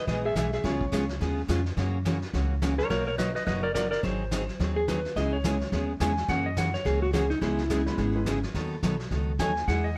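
This western swing excerpt has a playful, cheerful bounce and a loose swung feel in four. A clean electric lap steel carries a slide solo throughout, its fingered lines sitting up front with gentle volume swells. Close behind, a picked dreadnought acoustic guitar picks out the accompaniment with a hint of finger squeak, while a pizzicato upright bass gives a woody, thumpy, dark foundation. A vintage brush kit keeps time on brushed snare, hi-hat and a punchy kick, its top rolled off in a small-room sound. At 7.4 seconds an intimate upright piano slips in briefly from the background, its action noise faintly audible, before dropping out at 8.3 seconds. The chords move through a jazzy cycle of sevenths, and light reverb softens the whole blend.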